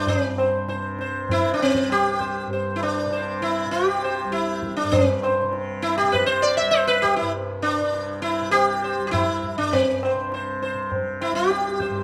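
In a straight 4/4 at about 100 BPM that gradually speeds up, this devotional, meditative Hindustani classical excerpt in raga hamsadhwani on C opens with a mellow, softly plucked tanpura drone and a bright, plectrum-plucked sitar melody that sits up front, its buzzing tone and sympathetic strings shimmering above. Low-tuned, ringing tabla with a small-room character joins at 0.1 s, and the whole excerpt sits in the moderate reverb of a recital hall.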